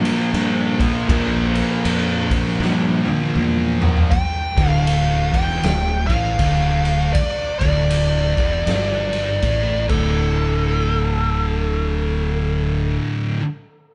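A live-in-one-room recording with light reverb and a rolled-off top opens this brooding, hypnotic stoner and doom metal excerpt in D minor at 79 BPM with a swung 4/4 feel, where two thick fuzz guitars grind out the riff in the background beside a bright, double-tracked semi-hollow guitar that stops at 4.1 seconds, a punchy fingered bass with tube saturation holds the low end, a gritty garage drum kit with a fat snare sits up front and plays a fill from 2.6 seconds, and a dark fuzz lead guitar with wah and delay takes the melody from 4.1 seconds.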